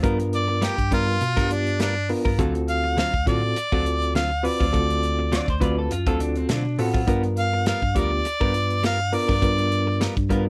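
A swaggering, rollicking straight-eighth soul blues at 102 BPM opens on a tight, roomy soul drum kit, a mellow tine electric piano carrying the bass, compressed clean guitar stabs and a gritty, overdriven reed electric piano with fast tremolo over G7#9 and D7#9 chords, before an up-front, clear harmonica with vibrato, scooped notes and overdrive takes the jazz-style solo melody from 0.3 s, joined between 5.3 and 7.2 s by a slightly broken-up picked guitar line through a small old amp, in a dry mix with little reverb.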